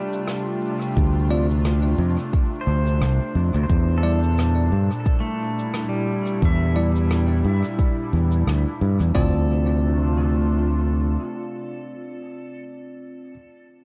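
Ambient dub at 88 BPM in D minor, this short cut from a longer piece feels spacious and hazy, swinging lightly on a Dm7 that moves to Em7b5 and returns to Dm7. A breathy, detuned pad with chorus holds sustained chords throughout, while a twangy pedal steel guitar, played with fingerpicks and slide, spins arpeggios through tape echo. A cabasa and rim click, brushed and rolled-off, carries dub echo from the start. At 1.0 seconds a growly overdriven bass with tube saturation arrives up front alongside a deep house kit of deep kick, dark hats and toms, and a bell-like tine electric piano soon adds clean stabs through dub echo. The kit drops out at 9.3 seconds, and once the bass stops at 11.2 seconds, the pad, steel guitar and electric piano ring on in a dark, dry production.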